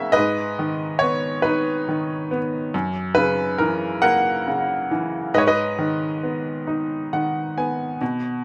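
Classical solo piano in a lyrical, rubato 6/8, this brief excerpt from a longer piece feels wistful and reflective as it moves from G# minor through F#7 and back. A bright upright piano carries everything alone, its brilliant, woody tone sitting intimate and up front with audible action noise, set in a moderate studio ambience. Near the close, a short piano fill at 6.7 seconds rounds off the phrase before the sound ends at 8.4 seconds.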